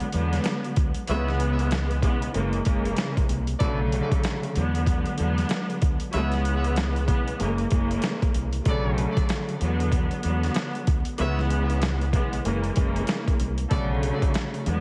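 Reflective and gritty, this boom-bap hip-hop excerpt rides a swung 95 BPM groove in 4/4, centred on B dorian with a tuning slightly below standard pitch. A compressed, pitched-down sampler-style drum kit sits up front with a thumpy kick, a medium-tuned snare and hi-hat, while a dark, round fingered electric bass enters at 0.1 seconds and moves through its low register. Lush bowed strings carry the accompaniment with vibrato and a smooth top, filtered and given a cassette-tape colour. From 1.1 to 13.9 seconds a tight trumpet section adds soft-attack, jazz-style stabs in a clear, present tone, filtered and touched with digital delay. The harmony cycles through E7, C#m7, F#7 and Bm7, and the whole mix carries a heavily compressed radio sound, vinyl crackle and light small-room reverb.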